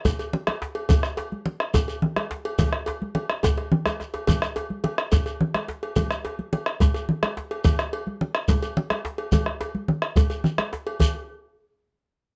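From the first beat, a West African drum ensemble plays an earthy, powerful 12/8 groove at 142 BPM: the round, saturated bombo and the bright, damped congas sit up front, while the tight, cracking djembe with its metal rattles, the metallic cowbell and the grainy, mellow shekere fill out a close, detailed sound under light reverb, with a brief drum fill at 3.9 seconds in this cut from a longer piece.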